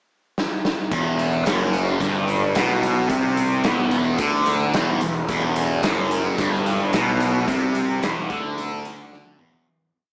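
A thick, double-tracked fuzz guitar leads this short psychedelic rock piece, playing a single-note riff in E minor through distortion and a phaser that gives it a trippy, dark edge. The riff starts at 0.9 s after a brief pickup bar that closes with a drum fill from 0.4 s, and runs to the end at 9.7 s. A fuzz-driven picked electric bass doubles the guitar riff with punchy, overdriven eighth notes, while the raw garage drum kit sits up front with a punchy kick, medium-tuned snare, hi-hat and a grooving tom pattern, its saturated, gritty tone rolled off at the top. The tempo is a straight 110 BPM in 4/4, and a second drum fill arrives near the close as the music fades out from 7.5 s. A moderate echo chamber reverb and a small-speaker sound color the whole piece.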